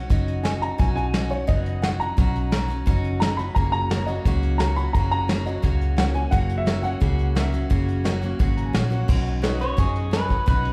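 A woody, slightly detuned upright piano with audible action noise carries a down-home, heartfelt honky-tonk solo at 174 BPM in B major. It is backed by a bright, picked dreadnought acoustic guitar, a round, punchy, foam-muted vintage electric bass and a soft brush kit with dark cymbals, while a second, polished upright piano sits in the background from 3.9 seconds. The first piano closes its solo with a fill before a twangy, slightly broken-up electric guitar through a small old amp takes the melody at 9.6 seconds, bathed in spring reverb, and the whole classic country excerpt is heard from further back in a moderate recital hall.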